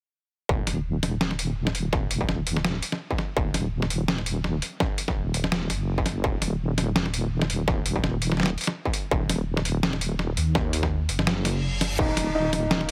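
A deep, detuned wobble bass with chorus drives this tense, dark half-time drum and bass excerpt, up front beside a tape-warm distorted electronic kick and a gritty, pitched-down boom bap kit of overdriven snare, hi-hat and crash, while a background reverse cymbal leads into a kick dropout at 11.6 seconds before a felt-muted upright piano with dub echo and audible action noise arrives at 12.0 seconds, joined briefly by a very quiet, dreamy backwards swelling texture, all within a heavily compressed, dry radio sound.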